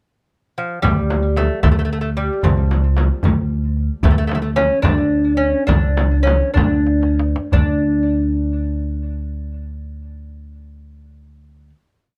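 A bright, delicate fingerpicked lute with gut and double strings leads this soulful, hypnotic Persian modal piece in D avaz esfahan, entering at 0.6 s with an ornamented modal melody touched by tape echo, some strings doubled at the octave. Underneath, a woody pizzicato upright bass sits up front on the low drum strokes, while a large, vintage, band-limited frame drum and a deep tombak set in the background both play low and high stroke patterns in a straight 6/8 at 60-75 BPM. The tempo slows from 4.0 to 7.5 s, a drum fill arrives at 6.9 s, and a final note rings out from 7.5 s, all captured by close, detailed microphones in a dry room.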